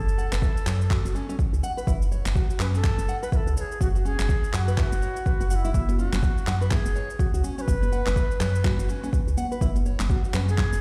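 A deep, overdriven electronic kick sits up front in this earthy afro house excerpt at 124 BPM in F# minor with a swung 16th feel, alongside a woody, round FM bass with sidechain pumping, overdriven electronic shaker and handclaps, dark fingerpicked nylon-string guitar arpeggios with audible finger squeak, 12-bit sampler grit, pumping and digital delay, and an airy, reedy bansuri melody carrying the same grit and delay, while close, dry congas played with hard hands enter in the background at 5.7 seconds, all heard through a big sound system in a bare stone room.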